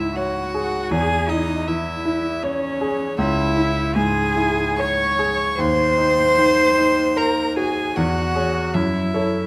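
Melancholic and solemn, this brief cut from a longer slow romantic movement for piano trio in C# minor moves at 77 BPM in a rubato 3/4 with uneven beats, as all three players sound together for its 9.5 seconds. A single violin carries the melody softly, its pure, floating sul tasto tone bowed with a gentle attack, while a dark, woody cello sits up front with a second line, bowed sul tasto with vibrato. A vintage-toned concert grand, also up front, supplies smooth accompaniment with deep bass, heard through close, detailed microphones in a moderate recital-hall reverb.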